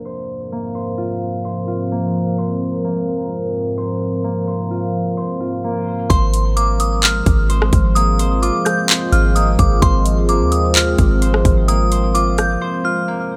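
A dark, detuned analog pad with chorus, phaser and sidechain pumping holds sustained chords beneath ringing concert-harp arpeggios softened by a low-pass filter and tape echo, as a filter sweep opens this ethereal, melancholic cloud-rap piece. At 6.1 s a half-time trap kit with a hard-clipped kick, metallic hats, handclaps and rim clicks arrives up front, alongside a boomy, sine-based 808 bass and a crystalline FM bell melody set high with chorus and tape echo. The drums and bass drop away for a short break at 12.6 s, leaving the pad and harp under light reverb, with the bell's last notes sounding until 13.1 s, as the cut ends.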